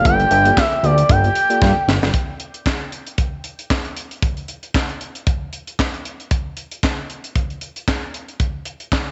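This slick, funky slice of early-eighties boogie funk in G dorian at 115 BPM opens on a Gm9 chord, with a smooth, mellow sawtooth lead carrying the melody through chorus and tape echo, gliding with portamento and vibrato over a fat, nasal, saturated analog bass. A worn, slightly out-of-tune tine electric piano sits in the background while a lush, very quiet bowed string section holds sustained chords. A tight funk kit with a high-tuned snare, handclaps and hi-hat adds a fill at 1.6 seconds, then carries on alone from 2.1 to 9.1 seconds in a small, lightly reverberant room.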